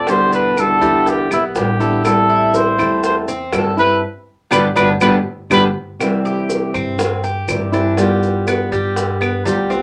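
Set in a wet small room, this danceable Cuban son and guajira cut at 121 BPM in C major puts a punchy, vintage trumpet with light vibrato up front on the melody until 5.6 s, over a dark, full-bodied, fingerpicked nylon-string guitar, metallic picked tres arpeggios on double strings, a thumpy pizzicato upright bass, tight, high-tuned bongos that sound distant, grainy maracas and woody claves entering at 0.6 s, with a band accent from 4.0 to 6.0 s as the Em7–Am7–G progression moves on to C and G7.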